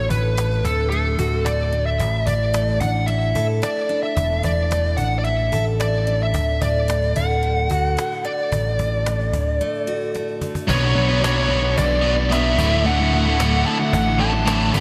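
A snappy, close and dry cajon drives this cathartic, restless quiet-loud alternative rock passage at 111 BPM in 4/4, with a growly, punchy overdriven electric bass up front and a smooth overdriven lead guitar singing a bright melody with slapback echo over chords in D major. A full-bodied steel-string acoustic guitar picks arpeggios through slapback and tape echo, carrying on through a break at 9.6 seconds and a drum fill at 10.2 seconds. At 10.7 seconds the sound turns heavy as a cranked stack guitar and a dark, compressed fuzz guitar crash in with a riff, backed by a very quiet, warbling vintage organ-string ensemble holding chords, all set in a lush hall reverb with a big arena sound.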